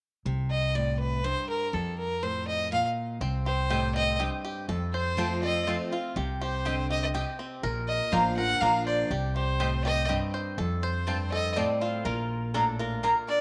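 Bluegrass in three-beat metre, this excerpt from a longer piece feels driving yet haunting, moving between C minor, F and Bb chords in a dorian colour. A picked dreadnought guitar with a full-bodied tone and a thumpy, woody upright bass open the passage, while a clear, smooth fiddle carries the melody up front with light vibrato. At 3.2 seconds the twangy banjo joins with percussive arpeggios, and a mandolin soon adds bright, double-string stabs. Near the close, at 11.6 seconds, a lap resonator guitar played with slide and fingerpicks slips in a short, nasal, metallic second line. Light reverb gives the ensemble a touch of space.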